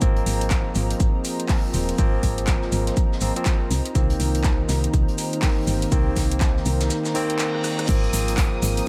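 A smooth, roomy deep house mix with a generous studio reverb opens this cut from a longer piece, its mood warm and smooth over a swung 4/4 groove. A punchy, overdriven electronic kick sits up front, layered with an overdriven electronic kit of metallic hats, handclaps, rim clicks and crash, while a filtered vintage acoustic kit of hi-hat, shaker and snare pumps softly in a small room behind it. A round, woody FM bass and barky tine electric piano stabs, clean through a combo amp and fed into digital delay, carry the harmony as it moves from Ab69 to Cm7 and back. Two pads sit underneath: a detuned sawtooth analog pad roughened by 12-bit sampler grit holds sustained chords, and an airy, breathy pad with a nasal edge adds sustained texture, both chorused and breathing with sidechain pumping. A break arrives at 6.9 seconds, where a reverse cymbal and a short drum fill lead into 7.9 seconds. 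There a grainy, distant tube shaker and a shimmering vintage string machine on a high violin note join the mix.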